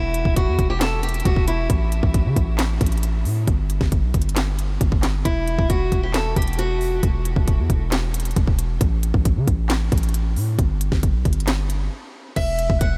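A bright, picked acoustic archtop guitar opens this menacing, brooding hip hop and trap piece, its short melodic phrase softened by a low-pass filter and trailed by tape echo, with finger squeak audible on the strings. Beneath it, a hard-hitting 808-style bass sits up front for the whole passage: a punchy, heavy sine tone with a noise layer, a fast attack and a decaying tail. An electronic trap drum kit joins almost at once, playing in a half-time feel with a hard-clipped kick, a sharp snare, crisp hi-hats, handclaps and crash cymbal, all pushed forward and clearly produced. The guitar returns at 5.3 seconds with another brief Esus2 figure, and after a short break it reappears at 12.4 seconds as this cut from a longer piece ends. Light reverb and a digital ambience give the mix a subtle sense of space around the dominant bass and drums.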